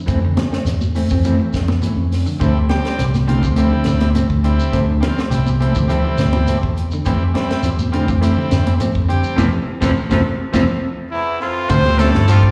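Heard through a venue's PA with recital-hall reverb and a small-room feel, this driving, funky afrobeat fragment in D minor moves at 103 BPM in a straight 4/4, swaying between Fmaj7 and Dm7. A round, up-front fingered electric bass anchors a tight funk kit with a high-tuned snare and a close, dry, grainy shekere, while damped congas, a dark mellow guitar playing tremolo stabs and a chorused semi-hollow guitar spinning arpeggios sit in the background, and a buzzy vintage combo organ joins at 2.4 seconds. During a band accent and a drum fill, a clear trumpet melody enters at 11.1 seconds over raspy tenor and baritone saxophone lines, with slapback echo on all three horns.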